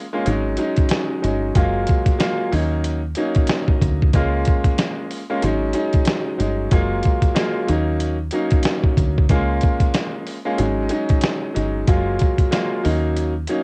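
Nostalgic yet confident, this swung boom-bap hip-hop excerpt opens with a clear, vintage concert grand piano alone, soon joined at 0.3 seconds by a dusty, sampler-style drum kit and a deep, foam-muted dub bass. The drums sit up front with a thumpy kick, fat snare and hi-hat, carrying 12-bit grit and cassette coloring, while the round, dark bass is thickened by tube saturation. The filtered, tape-softened piano cycles through Ab7sus4, Gbmaj9, Ebm7 and Db6 in a homespun cassette recording with light reverb.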